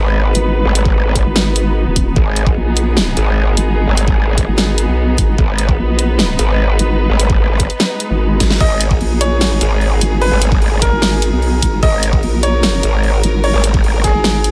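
A digital ambience frames this chaotic, aggressive piece of heavy wobble dubstep, cut from a longer track and moving at 149 BPM in a half-time 4/4 feel in G# minor over a single G#m chord. Two up-front basses dominate: a growling, saturated growl bass holds a low G#1 with chorus and overdrive, while a nasal, resonant vowel-sweep wobble bass with a mellower formant-filtered tone moves between D#1 and B1. A bright, intense studio string section sustains bowed chords with vibrato behind them, pumping from sidechain compression and dulled by a low-pass filter. The drums combine a layered electronic kit, with a huge snare, hi-hat and crash cymbal, and an overdriven, knocking electronic kick that joins at 0.9 seconds. At 8.0 seconds a background electronic swell sounds around a drum fill, and from 8.6 seconds a clear, intimate baby grand piano carries the melody between G#4 and D#5, its long sustain, audible action noise and delay set against the onslaught.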